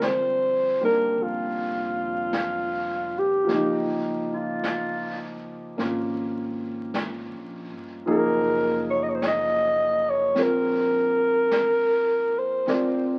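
Vinyl crackle and the aged sound of a very old 78 rpm record frame this romantic, tender jazz ballad, set in a large studio with moderate reverb. At a slow 52 BPM in swung 4/4, a dark, breathy alto saxophone carries the solo melody up front with light vibrato, subtone, soft attacks and scooped notes, over a warm, open concert grand piano with long sustain that moves from Bb69 to Db69 and Gbmaj7 before reaching Dm7 at 12.7 seconds. A woody pizzicato upright bass sits in the background, and a natural brushed drum kit with a medium-tuned snare and hi-hat plays throughout this fragment of a longer piece.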